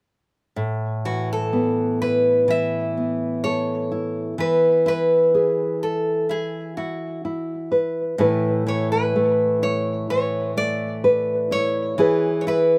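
A straight, unhurried 4/4 pulse at 63 BPM carries this intimate, tender acoustic folk-pop ballad in A major, cut from a longer piece, where a bright, fingerpicked nylon-string guitar with fresh strings and audible finger squeak plays up-front classical accompaniment from 0.6 seconds over Asus2, Eadd9 and E chords, while a second, warm, thumb-plucked nylon-string guitar enters at 1.1 seconds with a slapback-echoed melody, the pair set in light reverb and recorded in the open air.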